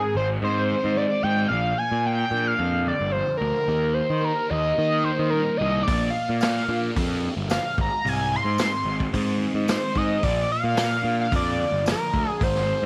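A screaming, gritty synth lead sits up front from the first second, its sawtooth and pulse-wave tone edged with ring modulation, distortion, chorus, vibrato and tape echo as it carries a bright, sustained, guitar-like melody high above the band. This is a kaleidoscopic, hypnotic stretch of psychedelic rock in Bb mixolydian, moving at 110 BPM in a straight 4/4 over chords that shift between Ab, Bb and Eb. Underneath, a dark, double-tracked fuzz guitar plays a picked riff in the background, colored by a phaser, while a round, overdriven fuzz bass joins almost at once and stays prominent in the mix. At 5.9 seconds a vintage acoustic drum kit enters with hi-hat, a punchy kick and a medium-tuned snare, its sound mid-forward with a rolled-off top. A jingly, compressed tambourine follows at 6.4 seconds, saturated and tucked behind the band. Light small-room reverb holds the parts together in this short section cut from a longer piece.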